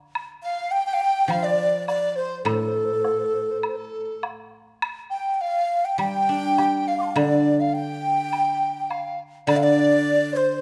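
This Chinese traditional piece for chamber ensemble is graceful and wistful, moving at 103 BPM in 4/4 with a rubato feel in the D yu mode, and it is cut from a longer work. A close, dry woodblock sets out at 0.2 seconds. At 0.4 seconds a breathy, bright xiao takes the melody up front, its tongued notes carrying vibrato and a reedy edge. Beside it, a large dizi plays a second line with a hollow, mellow tone, a buzzing membrane, crisp attacks, an airy quality and vibrato. From 1.3 seconds a guzheng played with fingerpicks adds silvery, ringing accompaniment in the low and middle register, placed up front with the xiao. A moderate recital hall reverb gives the ensemble a gentle sense of space.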